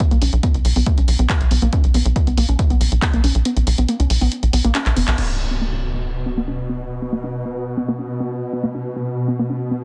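A warbling, lo-fi square-and-saw pluck riff, thickened with chorus, tube saturation, tape echo and filter sweeps, opens this relentless, industrial peak-time techno excerpt at 139 BPM, alongside a punchy analog kick and a drum machine of crash, handclaps and sidechain-pumped hi-hats re-recorded in a small room, while a tight, nasal sequencer bass pumps beneath and the kick drops out at 3.5 seconds; a drum fill and band accent then lead to an up-front impact at 5.2 seconds, after which a swarming, detuned granular drone with built-in reverb sustains under the pluck, inside a dense, heavily limited master with light reverb.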